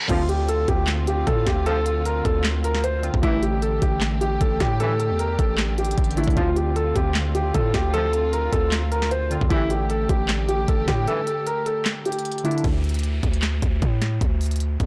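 A dark, mellow concert grand piano carries the melody from the first moment, its notes trailed by tape echo, in this eerie, brooding trap excerpt at 153 BPM with a half-time feel in D minor. Beneath it, glassy digital keys with chorus sit in the background, a dark chamber string section holds soft, bowed sustained chords with light vibrato, and a brass ensemble adds smooth stabs low in the register. A hard-hitting, punchy 808-style bass and an overdriven trap kit with a knocking kick, sharp snare, crisp hi-hats, handclaps and crash cymbal sit up front in a blown-out, overdriven mix with little reverb. The harmony alternates between Dm7 and A7sus4, with a break from 11.1 to 12.6 seconds as the brass drops out. Around 12.6 seconds the piano, keys and strings stop, leaving the 808 and drums over a D5 chord as a reverse cymbal and downlifter sweep through to the cut at 14.9 seconds.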